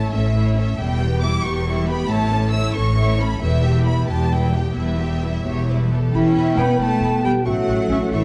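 Heard through a wet recital hall reverb, this cinematic, determined cue in 6/8 begins with the full string body. A rich studio violin section carries the high melody with vibrato and expressive portamento, while a smooth symphonic violin section shapes a second line beneath it. Bright violas fill the accompaniment, and clear cellos join a close, focused double bass section on the low end. At 6.1 seconds the brass and winds arrive for a swashbuckling lift: mellow French horns and a background trombone section hold sustained chords, a dark trumpet section adds tight stabs, and a pure flute section traces another line in the background. From 6.6 seconds a distant oboe and a very quiet clarinet add further voices over harmony that moves between A and E minor, before the passage, cut from a longer piece, breaks off at 8.2 seconds.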